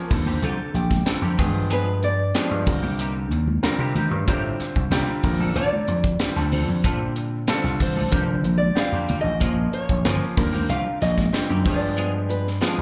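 Heard through a club's PA with light reverb, this bright, slick electric jazz fusion passage at 94 BPM in 4/4 puts a fingerpicked nylon-string guitar melody over clear baby grand piano accompaniment, both touched with slapback echo, while a punchy, up-front vintage slap bass and a crisp fusion drum kit with a high-tuned snare drive underneath, twangy clean electric guitar stabs with ensemble chorus sit in the background, and soft-handed congas play until 11.8 seconds, as the chords move from Eb69 through G7b9, Cm7, Bbmaj9, F13sus4 and Bbm back to Eb69 and G7b9.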